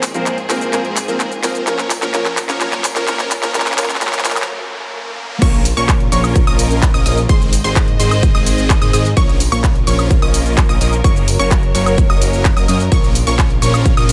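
In a straight 4/4 feel, this euphoric, anthemic festival progressive house excerpt opens with a build-up where a big-room dance drum kit of crash, handclaps, hi-hat, shaker and woodblock plays a fill, a huge detuned supersaw riff pumps under a phaser, tape echo and a low-pass filter sweep, and a rich, bowed studio string section holds sustained chords in the background. A soft, felt-muted upright piano accompanies in the opening seconds and a very quiet riser rises beneath, before a short break from 4.5 seconds. The drop lands at 5.4 seconds, bringing a punchy, up-front electronic kick, a fat, thick analog sawtooth bass and a bright, short-decay unison pluck arpeggio with tape echo, all pumping against the kick as the chords cycle through B-flat minor, A-flat and G-flat under light reverb.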